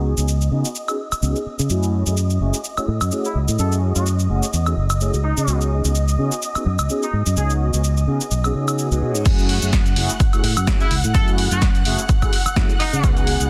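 Mellow, detuned synth brass with chorus and phaser, dark bowed strings and a bright, growly fingered bass open this nostalgic, funky filtered disco house passage together, all pumping under a low-pass filter sweep, while a punchy, tape-warm analog drum machine adds a swung groove of hi-hat, shaker, snare, woodblock and crash. A clear, tight jazz-style horn section carries the melody from 3.2 seconds, its lines trailing tape echo. At 9.3 seconds the drop arrives as an up-front electronic kick joins, driving the lush chords of the dense, heavily limited mix.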